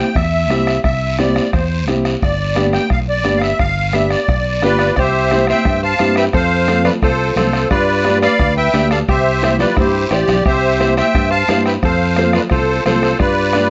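Cumbia at a brisk 175 BPM in C major, festive and sunny, with a reedy, shimmering musette accordion carrying the melody up front over a woody, vintage upright piano with audible action noise, a direct, amped fingered electric bass, a soft-beater bombo, a raspy guiro and bright, high-tuned congas sitting distant in the background, while a clean, picked electric guitar with spring reverb adds a second line from 4.7 s and a drum fill arrives at 9.8 s in this fragment cut from a longer piece.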